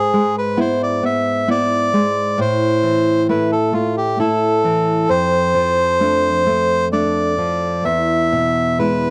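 A reedy bandoneon melody and a fingerpicked nylon-string classical guitar begin together, both up front, in a yearning, melancholic romantic duo in A minor at a rubato 66 BPM in 3/4, the guitar's dark accompaniment moving from E7/G# through Am and Dm/F to E in a dry, close 1970s-style studio sound with light reverb, cut from a longer piece.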